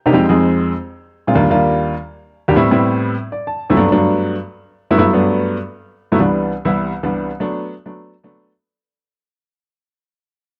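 A worn, intimate baby grand piano plays alone from 0.1 s in this lively, danceable jazz cut at 198 BPM in G major, its short sustain, up-front presence and audible action noise colored by cassette tape and light reverb, moving from Fm7 and Bb7 through Ebmaj7 and Am7 to Gmaj7 with a brief fill at 3.2 s before a fade-out begins at 6.2 s over Cmaj7 and Bm7.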